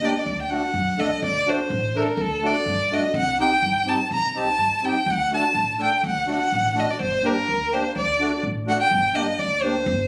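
A bowed violin opens this festive, soulful klezmer piece at once, carrying the melody up front with a rich, smooth tone and steady vibrato, while accordion and upright bass start beneath it. The tune sits in D phrygian dominant at 125 BPM in a straight 2/4, with harmony moving among D, Cm and Gm. The accordion fills the middle with a reedy, sweet yet dark sound colored by light tremolo tuning, and the plucked upright bass, strung with steel, gives a woody, thumpy foundation lower in the mix. The passage moves into a new section at 8.9 seconds, and the accordion drops out at 9.8 seconds, leaving the violin and bass to finish at 10.1 seconds. Captured on a phone in a small club room, the recording has a moderate, short reverb and compression, and it is cut from a longer performance.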